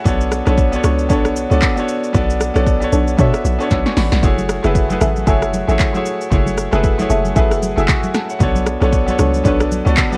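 The bright grand piano sits up front in this deep, soulful amapiano excerpt, its brilliant, intimate tone carrying audible action noise as it plays accompaniment spanning A3 to E6 and adds a fill between 3.2 and 4.2 seconds. Beneath it, a hollow log drum bass bounces with a percussive, fast-attack punch and mellow decay, while a layered deep house drum kit drives a swung 115 BPM groove in 4/4 with a deep kick, punchy snare, metallic hats, handclaps, rim click and shaker, overdriven and forward, capped by its own fill just before 4.2 seconds. Soft, nasal chord stabs glow darkly in the background, treated with chorus and tape echo. Congas with a thin, medium-tuned skin enter at 4.2 seconds, adding small-room acoustic color behind the mix. The harmony moves from Bm9 to F#m9 and back, and the whole piece is steeped in a worn, warbling cassette character with drifting pitch.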